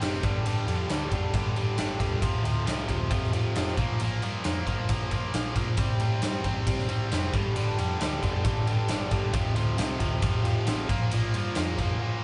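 A live-in-one-room classic rock recording with light reverb and a softened top end, this driving, sunny passage, cut from a longer piece, pairs a biting, double-tracked overdriven guitar riff up front over power chords on G, F, B-flat and C with a dark, round hollow-body short-scale bass sitting in the background and a big acoustic drum kit of punchy kick, medium-tuned snare and bright ride cymbal, all running from the start to about 12 seconds.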